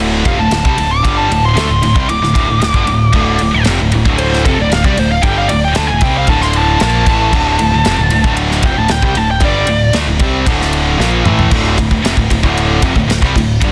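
Heavy metal in D minor at 115 BPM, epic and relentless, where three picked rhythm guitars, two bright and one warm, biting and double-tracked, grind out a riff in the background over a growling, overdriven picked bass. A polished, airy studio drum kit sits up front with a punchy kick and medium-tuned snare and enters at 0.3 seconds, and a warm, distorted high-gain lead guitar cuts through a solo until 9.9 seconds before a drum fill at 11.0 seconds leads into a new section in this dense, heavily limited excerpt from a longer piece.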